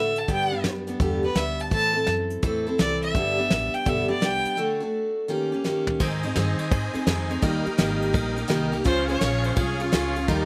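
Nostalgic and easygoing, this honky-tonk and classic country passage, cut from a longer piece, swings at 168 BPM in G major, with a clear, focused fiddle soloing over a bright, full-bodied picked steel-string acoustic guitar with audible finger squeak, a woody, thumpy pizzicato upright bass and a soft brush kit with dark cymbals and a fat snare, until a drum fill leads into a lift to Ab major at 6.0 s, where a reedy, shimmering musette accordion adds sustained chords and the fiddle returns at 8.9 s, the whole captured dry outdoors.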